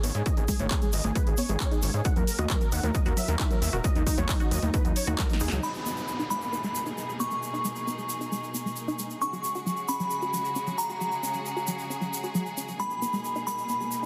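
Uplifting trance with a driving, bittersweet mood, where an overdriven kick, punchy techno kit and a gritty, saturated synth bass pump under a huge, detuned supersaw melody until the kick falls out at 5.3 seconds and the others stop at 5.6, leaving the lush unison pluck arpeggios and grainy tube shaker beneath a crystalline, chorused FM bell line, distant bowed strings and a brief downlifter, all set in a lush hall reverb.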